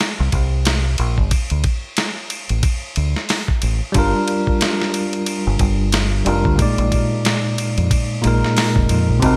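A bell-like tine electric piano, bright and clean with harmonic tremolo, tape echo and vintage 12-bit sampler grit, enters at 3.9 seconds over chords moving from Gm7 to Bb7sus4 in this cinematic, melancholic trip hop cut at 91 BPM with a swung 16th-note feel. Underneath, a dusty soul sampler-style kit with a thumpy kick, medium-tuned snare, hi-hat and ride sits up front, compressed and gritty under gated reverb, while a deep, round dub bass on fingered electric holds the low end. At 9.2 seconds an eerie, inharmonic synth bell with chorus flickers in the background, all within a lightly reverberant, bright 1980s-style digital production.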